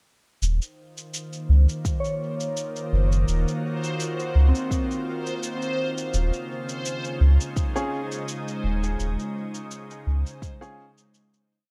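Ambient dub with a meditative, deep mood, this short complete piece rests on a calm, organ-like pad whose pure, bright chords shift slowly beneath an ensemble chorus and built-in reverb. A round, sine-toned sub bass sits up front with a dub-style line, thickened by tube saturation, while a soft, layered electronic kick and a sparse, muffled, pitched-down shaker with a tape-like grain and small room ambience keep a gently swung groove. From 2.0 seconds a mellow, vintage FM synth bell warbles through two slow arpeggio loops of unequal length that drift against each other, colored by chorus, dub echo and a low-pass filter sweep. A reversed, granular texture swells up to a dreamy held high note, and from 7.8 seconds a woody, boxy upright piano adds short, sparse close-voiced chord stabs that echo through dub echo. The piece fades out from 8.0 seconds under light digital ambience.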